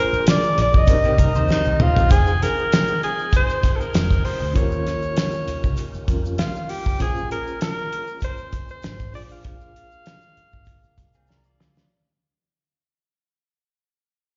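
Over a lightly swung 16th-note groove in four, a cloth-damped drum kit with a fat snare and tight kick sits up front beside a round, foam-muted fingered bass, while a grainy tube shaker murmurs behind them in this smooth, cinematic 1970s-style soul excerpt, where a breathy, subtone alto saxophone carries the melody through slapback and tape echo over a reedy, slightly out-of-tune electric piano with fast tremolo, a lightly overdriven tonewheel organ holding sustained chords through a slow rotary speaker, and a lo-fi, slightly broken-up electric guitar riff that appears at 1.1 seconds and returns at 11.2 seconds, all heard as a live gig through the venue's PA with a dull, rolled-off top as the music fades out from 2.1 seconds.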